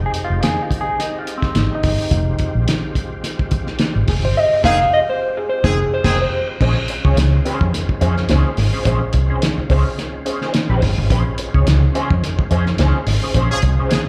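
Heard through a club's PA in a small, lightly reverberant room, this cool, driving 107 BPM funk excerpt swings its sixteenths over Fm9 moving to Bbm9, with a muffled, cloth-damped drum kit and a round, foam-muted fingered bass up front, a dark, mellow electric guitar through wah, spring reverb and slapback echo taking a clean solo until 6.6 seconds, a thick, overdriven tonewheel organ holding chords through a slow rotary speaker and chorus vibrato, and a clear, distant horn section coming in at 4.6 and 13.5 seconds amid band accents that begin at 4.4 and 13.3 seconds.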